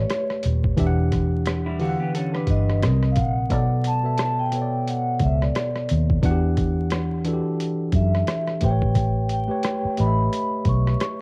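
Introspective and smooth, this neo-soul and R&B passage has a gently swung sixteenth-note feel and a hazy, home-recorded cassette character, with light reverb and vinyl crackle. A mellow vibraphone played with soft mallets carries the melody, its metallic ring shimmering with a medium motor vibrato and softened by cassette tape. Beneath it, a worn, slightly out-of-tune tine electric piano sits up front, moving through chords such as A9, Em9, Cm7 and Bm7, while a dark, round, foam-muted fingered bass anchors the low end. A gritty, pitched-down boom bap sampler kit of thumpy kick, hi-hat and rim click adds overdriven crunch. For just a moment, from 1.7 to 2.8 seconds, an electric guitar through a small old amp adds a slightly broken-up, picked second line.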